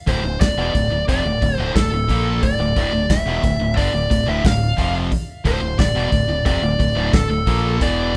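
Epic and aggressive, this heavy metal excerpt from a longer piece moves at 89 BPM in a straight 4/4, sitting on a single D minor chord throughout. A dark, high-gain lead guitar carries the melody up front between A4 and F5, its distortion trailed by delay. Beneath it, two picked rhythm guitars drive the riff across the same low register: a bright, sludgy part with overdrive sits prominently, while a high-gain distorted guitar lies very quiet in the blend. A growling fingered electric bass, direct and amped with punchy overdrive, anchors the low end, and a modern acoustic drum kit with a tight kick, medium-tuned snare and hi-hat plays in a pumping studio room until 8.0 seconds. Light reverb and a rough home demo mix give the 8.2-second clip a raw, unpolished edge.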